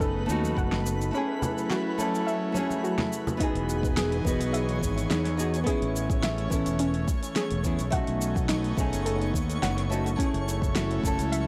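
A fingerpicked nylon-string guitar with fresh strings and a small body opens this smooth, relaxed sunset chillout excerpt, joined from the first moment by an airy, breathy pad with chorus, a soft, round pluck playing arpeggios through subtle chorus and analog delay, and a punchy, up-front fretless electric bass. An electronic kick drum with a deep, tape-warm thump and a deep house kit of fat snare, metallic hi-hats and cabasa sit in studio reverb over a lightly swung sixteenth-note feel in 4/4. Ringing acoustic congas enter at 0.4 s and stop at 3.4 s, just as the harmony moves from B7 and F#m7 into Emaj7, Amaj7, B7 and F#m7. High above, a twinkling granular texture adds sparkling octave-up shimmer inside its own built-in reverb. The recording as a whole is dry and gritty, with the guitar carrying a touch of analog delay.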